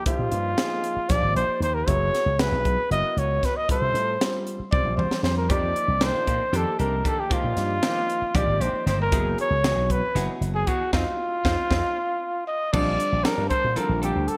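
Slick and soaring, this 1980s-style electric jazz fusion cut at 232 BPM in 7/8 puts a mellow trumpet melody up front, with light vibrato and scooped notes, over a warm grand piano with subtle chorus, a bright, punchy slap bass with an envelope filter, and a gritty, saturated drum kit with a high-tuned snare and gated reverb, while a clean, compressed semi-hollow guitar adds lush chorused stabs in the background from 5.5 s, and drum fills, a band accent and a piano fill lead into a move to Bbmaj9 at 12.7 s, set in a digital production with moderate plate reverb.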